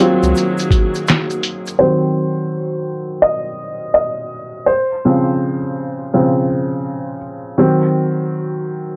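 Nostalgic and hazy, this lo-fi hip hop excerpt moves at 83 BPM in 4/4 with a swung sixteenth-note feel, set in Eb dorian. A felt-muted upright piano sits up front throughout, its soft, mellow tone given a short sustain and thin felt character, with cassette tape colour and a low-pass filter dulling its edges. Beneath it, a chamber string section holds bowed, sul tasto chords with light vibrato and a smooth top. A compressed, pitched-down sampler-style drum kit with a thumpy kick, medium-tuned snare, hi-hat, handclaps and shaker joins at 0.2 s, carrying 12-bit grit, alongside a grainy, bright egg shaker tucked in the background. At 1.8 s the strings, drums and shaker fall away, leaving the intimate piano alone over chords moving from Ebm6 to Dbmaj7 and back. A small room reverb and worn, warbling tape with pitch drift give the whole recording an aged, dreamy cast.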